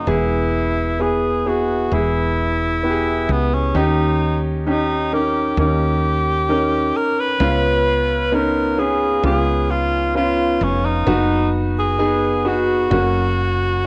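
A home cassette recording in a moderate room opens on a hopeful, heartfelt pop ballad at 65 BPM in 4/4, tuned to A4 = 435 Hz, cut from a longer piece, where a mellow, close-miked cor anglais sings the melody in classical style with light vibrato over a clear concert grand piano with deep bass, both carrying cassette tape colour and plate reverb, while a woody, round, punchy fretless electric bass enters at 0.1 seconds beneath chords moving from E through D#7 and C#7 to B/F# and F#.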